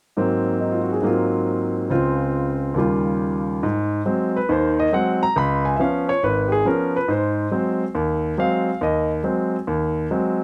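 Jazz at a relaxed, swinging 139 BPM in 4/4, with a firm swing on the eighth notes and a home in Ab mixolydian. A solo concert grand piano carries this short excerpt from 0.2 to 10.4 seconds, ranging from deep bass up into its upper register. The instrument sits close and up front, with a clear, polished tone, long sustain and the audible noise of its action adding an intimate, in-the-room feel. The opening passage moves through rich Ab9, Ab13, Dbmaj7 and Eb9 harmonies before a new section at 3.6 seconds settles into a pattern of Ab7 and Db7 chords, returning to Ab7. A light reverb gives the piano a touch of space while keeping its presence immediate.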